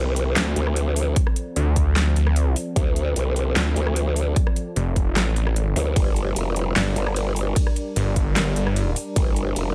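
Set in a digital ambience, this chaotic, heavy wobble dubstep clip moves in a half-time feel over Dm7, shifting to Gm at 6.0 seconds. Up front, a bright, wobbling growl bass with chorus and overdrive stacks with a snarling distorted saw bass built from detuned sawtooth unison and a moving notch, while a lush supersaw pad with sidechain pumping and a low-pass filter sits in the background. A big-room dance drum kit adds a huge snare, metallic hats, handclaps, ride cymbal and rim click, and from 1.2 seconds a punchy, overdriven electronic kick drum hits hard in a small room reverb.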